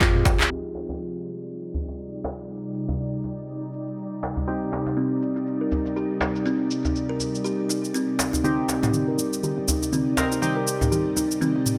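This afro house excerpt opens with a full-band accent over an Fm chord before settling onto Cm, in a warm, earthy mood. An ethereal, airy pad sustains detuned chords beneath chorus-smeared analog key stabs that sit round and warm in the background, and both breathe with sidechain pumping. A hard-handed acoustic djembe joins almost at once alongside an up-front, tape-tinged electronic kit of handclaps, shaker and toms, all swung on the 16ths. The woody kalimba drops out after the opening accent and returns at 4.5 seconds with bright, ringing arpeggios, close and dry, passed through a low-pass filter and tape echo, while a filter sweep that began at 0.5 seconds continues across the pad. At 8.4 seconds a deep, boomy 808-style bass comes back very quietly and a drum fill drives a build-up, with a further filter sweep on the kalimba. The whole mix sits in a light digital ambience, shaped by a low-pass filter.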